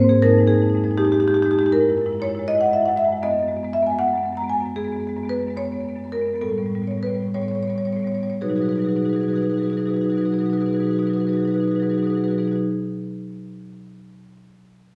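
Bathed in a wet recital-hall reverb, this playful cut from a longer contemporary classical piece features a solo marimba played with medium mallets, its woody rosewood bars sounding warm and up front as it moves through rich ninth chords in B major, flowing in a rubato 6/8 at roughly 54-81 BPM and slowing between 4.0 and 8.4 seconds before settling onto a B6 chord at 8.4 seconds.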